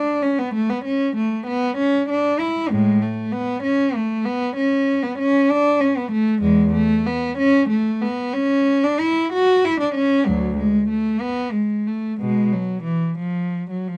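A 12/8 pulse at 63 beats per minute, counted in dotted quarters, moves with a free rubato that gives this short excerpt from a longer baroque-style suite movement a flowing, dance-like character. A single bowed cello carries the whole passage alone from 0.0 to 14.0 s, ranging from D2 up to F#4. Its tone is warm and expressive, shaped by vibrato, soft attacks and gliding portamento between notes. The instrument sits up front and close, captured by detailed microphones that reveal the intimacy of one player, with a light reverb adding a touch of space. The classical performance is tuned slightly high, at A4 = 441 Hz.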